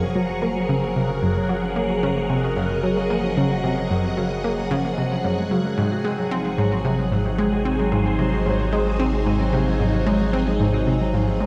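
Ambient, sequencer-driven space music with a luminous, cosmic mood, this short cut sets a swirling, vintage phased string machine holding sustained chords over fingerpicked Celtic harp arpeggios that ring through tape echo, shimmer reverb and a filter sweep. An analog pluck riff, detuned and bright with chorus and echo, sits most forward, while a deep, nasal round analog bass fades in underneath. The harmony moves from Gbadd9 to Ab at 5.8 seconds, all wrapped in a dark, warm production with a moderate plate reverb.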